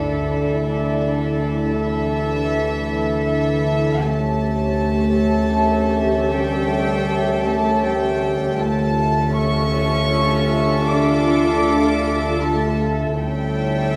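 A rich cello section anchors the bass of this mysterious, tense suspense cue, bowing sul tasto with a soft attack between D3 and D4 over a double bass section holding D2. Above them, two violin sections play a pure, floating melody from D5 to D6 and a second line from A4 to E5. A dark, woody viola section with vibrato stays lush in the background, while a glassy, ethereal glass harmonica sustains beating chords with a slow attack. A metallic, inharmonic FM drone with chorus and its own reverb enters at 0.1 s, low and eerie, and lingers with a long release. Cut from a longer piece, this slow 3/4 passage at 79 BPM sits in D harmonic minor with a tuning of A4 = 435 Hz, opens on a full-ensemble accent, and moves through Dsus2, A7/D, Dmadd9 and back to A7/D inside a reverberant hall.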